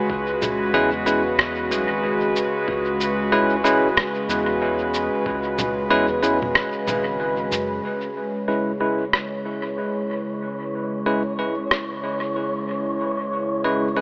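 A warbling, nostalgic tape-like pad holds a C#m7 chord as a muffled, pitched-down kick, a soft round sub bass, up-front congas, shaker and rim click with dub echo, and bell-like tine electric piano stabs settle into a deep, meditative ambient dub groove with a swung feel, drenched in huge ambient reverb and an AM radio tone, before bass and kick drop out and an airy, wind-like noise texture enters at 8.3 seconds alongside a filter sweep on the electric piano, in a piece cut from a longer work.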